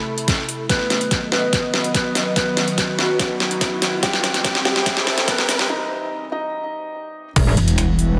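Heavy wobble dubstep at 144 BPM in a half-time 4/4, chaotic and aggressive in mood, cut from a longer piece as a build-up that breaks at 5.7 seconds and lands on an impact at 7.4 seconds. A soft, felt-muted upright piano carries the melody with audible action noise and a touch of digital delay, intimate against an evolving wavetable pad that morphs in the background through phaser and its own reverb. An airy, breathy pad with a detuned noise layer and chorus floats behind it, both pads pumping from sidechain. A layered, overdriven dubstep kit sits up front with a deep snare, metallic hats, crash, and finger snaps carrying a small-room character, joined by a knocking electronic kick, while a very quiet riser and sub drop sneak in beneath. At the impact a metallic, FM wobble bass on a low E hits with a fast attack, distorted and bright at first before turning saturated and mellow, as the chords move from A minor add9 through B and C to E minor add9 under a lush hall reverb.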